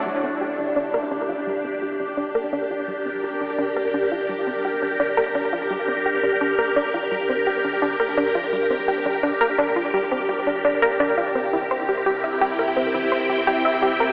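A swirling, vintage phased string machine holds sustained chords from the start, its ensemble chorus and phaser giving it a bright, warbling shimmer up front. Alongside it, an analog pluck built from sawtooth and square waves with a sub octave plays a round, fast-attack riff through chorus and analog delay. This hypnotic, cosmic ambient excerpt in G dorian moves at 85 BPM from Gm to C at 11.4 seconds, set in a vast, echoing cathedral reverb with a telephone-like tone.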